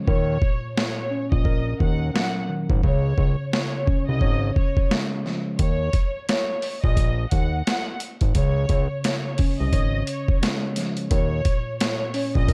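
A gritty, pitched-down boom-bap drum kit sets a swung 87 BPM groove in 4/4, its thumpy kick and high-tuned snare sitting up front beside a fat, saturated analog bass that moves between Ab1 and Eb2. A mellow tine electric piano with a cassette-tape colour and a lush, bowed violin section carrying the melody, touched by tape echo, drift over Ebm7 and Db chords in Eb minor, with a break running from 0.0 to 5.6 seconds. This reflective, dark hip-hop excerpt has a warm production and light reverb.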